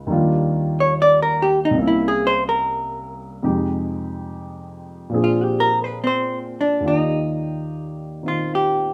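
Jazz ballad excerpt in Eb major at 71 BPM, with a late-night, intimate mood, a relaxed swing and tuning set slightly low at A4 = 437 Hz. A mellow, dark baby grand piano plays accompaniment from the start. At 0.8 s a clean, picked vintage electric hollow-body guitar enters up front with the melody, featured as a solo through 6.8 s over changes from Ebmaj9 through C7b9, Fm7 and Bb9, returning to Ebmaj9. A moderate large-studio reverb gives the close, unhurried playing a soft sense of space.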